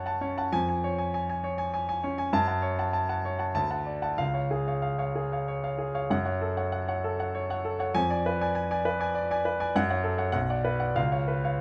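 This is a classical virtuoso piano study in F# minor, a brief stormy and passionate piece cut from a longer work. It moves in 3/4 at roughly 91-101 BPM, with a rubato feel that lets the pulse breathe. A solo concert grand piano plays throughout, sounding clear and natural, with a deep bass reaching down to B1, long sustain, and an up-front presence as the part spans up to A5. The harmony circles around F# minor, pushing through D and C# before a tense diminished chord at 7.9 seconds, then turning toward B minor and landing on C#7 at 11.0 seconds, leaving the passage unresolved. Light reverb gives the instrument a sense of space while keeping its detail intact.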